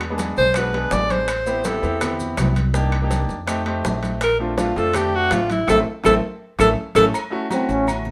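Afro-Cuban jazz at a sunny, danceable 164 BPM, this excerpt features a clear, up-front alto saxophone soloing with light vibrato and scooped notes over a growly, woody pizzicato upright bass, an intimate baby grand piano with audible action noise, and a background bed of ringing congas, vintage timbales and agogo bells, grainy maracas, very quiet tight bongos with cowbell, and woody claves, as the band hits an accent at 5.7 seconds, a drum fill arrives at 6.4 seconds, and a breathy, whispered trombone slips in briefly at 7.5 seconds, all set in moderate studio reverb.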